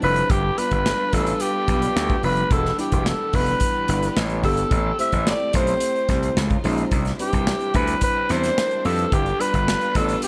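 A polished, lightly reverberant small-room sound frames this short cut from a longer piece of 1980s jazz-funk pop, moving at 109 BPM in a straight 4/4 with a nocturnal, urban mood. Up front, a raspy, breathy alto saxophone carries the melody with vibrato and a growling, vintage edge. Beside it, a punchy overdriven slap bass supplies a bright, amped bottom, while an acoustic studio kit of kick, snare and hi-hat pumps in its room with a punchy kick and medium-tuned snare. An FM electric piano layered with a soft pad adds lush, dreamy accompaniment through subtle chorus, and a very quiet bowed string section holds smooth, sustained chords beneath. The harmony moves from G7 through Em7 and Am7, slips briefly through C#maj9 to Cmaj9 at 6.9 seconds, and returns to G7.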